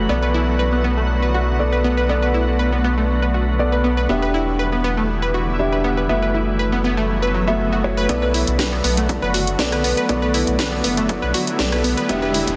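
Progressive house at 120 BPM in B minor, expansive and dreamy, this cut from a longer piece opens with a shimmering, ethereal pad on sustained Bm7, Em7 and F#m7 chords, dark boxy grand piano stabs with dub echo, a round, deep analog bass up front, bright detuned analog pluck arpeggios and a very quiet drifting glass-harmonics texture, all over a lush hall reverb with sidechain pumping on the pad, piano, bass and pluck, until a faint electronic swell and riser rises from 7.3 s and at 8.1 s a punchy background kick and an up-front house kit with hi-hat, rim click and cracking snare drive a build-up in a dense, heavily limited master.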